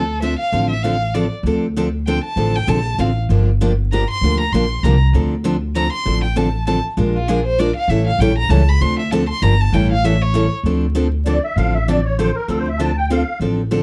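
Swinging and virtuosic, this short passage of acoustic string swing in the manouche style moves at 196 BPM in 3/4 with a lilting swing feel, set in D minor and cut from a longer piece. A rich, expressive bowed violin carries the melody from the start, its vibrato, soft attack and portamento gliding through a minor-key progression that circles Dm7, Gm7, Bb7 and A7b9. Beneath it, a bright picked steel-string acoustic guitar sits up front with audible finger squeak, while a woody, thumpy upright bass with gut strings anchors the low end with pizzicato notes. At 11.3 seconds a reedy, shimmering musette accordion takes over the lead, its wet tuning and band-limited, vintage tone standing out after the violin falls silent at 10.5 seconds. The production is dark with light reverb and a layer of vinyl crackle, giving the whole an old-record patina.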